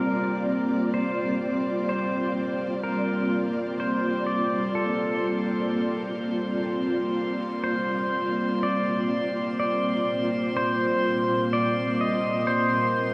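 Ambient music at a slow 63 BPM in Bb major with a peaceful mood, where a twangy, clean pedal steel guitar fades in up front to carry the melody with fingerpicked slide lines, volume swells, tape echo and shimmer reverb over a mellow, airy pad holding sustained Bbmaj9 and then Cm/Bb chords through ensemble chorus and tremolo, while a faint glassy texture of drifting overtones also fades in above and a very quiet, evolving wave-folded analog drone enters at 11.0 s, all within the long tail of a vast, echoing cathedral space in this segment cut from a longer piece.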